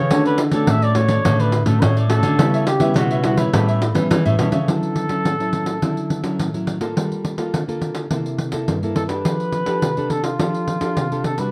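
A distant, dark trumpet with light vibrato carries a jazz-style solo melody over crisp, picked cavaquinho, a fingerpicked classical nylon-string guitar and an up-front, full-bodied nylon-string guitar bass, joined at 0.1 seconds by a jingly, hard-handed pandeiro, in this lively, sunny samba and choro excerpt whose cavaquinho and bass stop at 4.7 seconds, leaving trumpet, guitar and pandeiro to move through ninth, thirteenth and six-nine chords under a warm production with moderate studio reverb.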